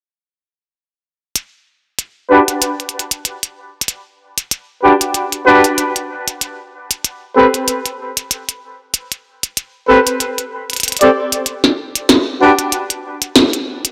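Glitch hop at 95 BPM in 4/4, with a 16th-note swing that gives this short cut from a longer piece a gritty, playful bounce. A glitchy electronic drum kit of tiny snare and clicky hi-hats arrives at 1.4 seconds, sitting up front after being re-recorded in a small room. From 2.3 seconds a tight, close-miked horn section plays pop-style stabs between C4 and D5, its light vibrato coated in vintage 12-bit sampler grit, a low-pass filter and dub echo. A filter sweep runs across the horns while the harmony moves from Gmaj7 to Am9 and back to Gmaj7, all tuned slightly sharp to A4 = 441 Hz. A lush hall reverb with a 1.9-second tail surrounds the dark, warm production.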